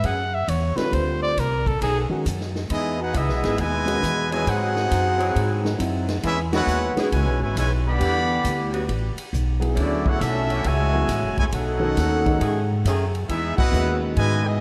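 Big band swing jazz, energetic and joyful at 136 BPM in E major, opens with a breathy, vibrato-laden solo trumpet over distant saxophone-section chords, woody pizzicato upright bass and a punchy swinging drum kit, joined at 0.8 seconds by an intimate grand piano with audible action noise, before a clear, tight trumpet section with analog delay and a brilliant trombone section take over at 2.7 seconds, with band accents at 6.5 and 13.5 seconds, all soaked in dreamy plate reverb with lossy compression artefacts in this excerpt from a longer piece.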